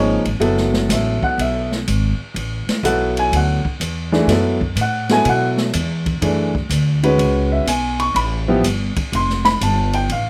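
A warm, boxy upright piano sits up front, laying down accompaniment across a register that reaches from its low middle up into high notes. This short, intense and searching modal jazz excerpt swings its eighth notes in 4/4, cut from a longer piece. The upright bass is plucked and woody, with steel strings and a dark, close tone beneath the piano. An open jazz drum kit on hi-hat, kick, ride and snare enters at 0.3 seconds, its dark cymbals, medium-tuned snare and boomy kick sounding natural in a small room. The harmony rests on F#m11 before moving to a rootless Dm11 at 8.2 seconds, set in light reverb with a layer of vinyl crackle.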